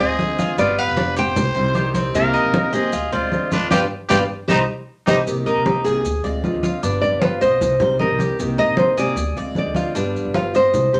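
A brisk, straight 4/4 pulse at 154 BPM drives this nostalgic, danceable slice of Cuban son and guajira in C minor, with low-tuned, damped congas entering at 0.2 s under soft hands and grainy maracas sitting dry in the background. An upright bass plucks a woody, thumpy foundation while a fingerpicked steel-string acoustic guitar fills in the accompaniment and a bright, metallic Cuban tres ripples through arpeggios on its doubled strings. Up front, a classical-toned nylon-string guitar carries the melody, joined by a raspy, growling trumpet with scooped notes and vibrato on a second line that stops at 5.2 s, near the close of a band accent. From 5.3 s the nylon-string guitar takes a solo over a circling Dm7b5, G7, Cm, Cm7 progression. A wet studio reverb gives the ensemble a sense of space in this passage cut from a longer piece.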